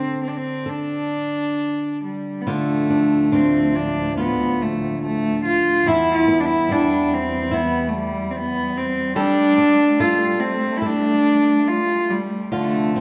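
Bathed in the wet reverb of a recital hall, this mournful, haunting Celtic slow air excerpt drifts in free rubato as a nasal, reedy solo cello with a gut-string, period-style tone sings the bowed melody up front over a fingerpicked acoustic flamenco guitar with fresh strings, while a dark, smooth-topped string section with expressive vibrato enters at 2.4 seconds to hold sustained chords beneath.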